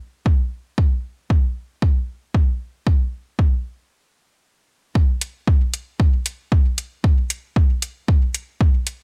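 An overdriven, deep electronic kick drum sits up front in this layered, produced techno fragment at 115 BPM in 4/4, with a light 16th-note swing. The mood is nocturnal and meditative, and the sound is dry, with only a small room ambience around the drums. The kick carries the opening section alone, then the music drops into a brief stop from 3.9 to 5.0 seconds. When the second section begins, metallic electronic hi-hats arrive at 5.2 seconds, also overdriven and up front, their edge softened by a low-pass filter. Taken from a longer piece, the passage stays spare, built on just these two gritty drum parts.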